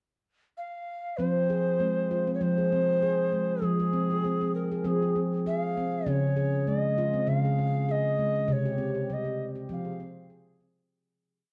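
A lightly swung 16th-note feel at 99 BPM in 4/4 carries this hypnotic, gentle world-meditative piece in F minor, where a mellow, reedy cedar flute enters at 0.6 s with a motif-based melody of call phrases marked by chiff and vibrato, and a ringing stainless-steel handpan joins at 1.2 s with an up-front ostinato and dotted bass figure, both parts touched by tape echo in a small, wet room until the fade-out that begins at 8.5 s.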